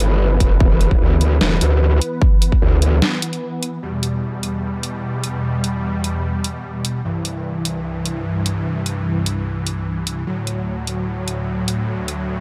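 Heavy wobble dubstep in E minor at 149 BPM with a half-time feel, this menacing, aggressive cut from a longer piece opens mid-drop. A growling, wobbling bass, saturated and formant-filtered with chorus and overdrive, drives the first 3.0 seconds before falling away into a brief break. An overdriven electronic kick, punchy and up front, hits from 0.4 to 2.6 seconds. Behind them, a huge, lush bed of detuned sawtooth supersaw chords sustains throughout, pumping against the sidechain under a low-pass filter as the harmony moves from E5 to Em, C and D. The dubstep kit's hi-hat and deep, gritty snare carry on until 12.2 seconds in a dark production that stays dry and close.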